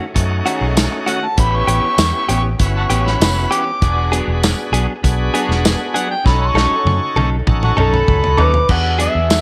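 A straight-eighth soul blues groove in 4/4 at 98 BPM rolls along with a laid-back, rollicking feel, driven by an up-front acoustic soul drum kit with a tight kick, dark cymbals and tambourine, plus a drum fill from 6.3 to 8.7 seconds, over a round, punchy, foam-muted fingered bass. A gritty, overdriven harmonica with tongue slaps and scooped notes takes the solo, entering at 1.1 seconds, over clean direct-recorded guitar stabs bathed in spring reverb and analog delay, a shouting tonewheel organ turning through a slow rotary speaker with overdrive, and a very quiet, smooth bowed chamber string section holding chords. At 7.8 seconds a slightly broken-up, lo-fi electric guitar through a small old amp picks up the melody as the changes move through B9, A9 and E9 in a small room ambience, in an excerpt cut from a longer piece.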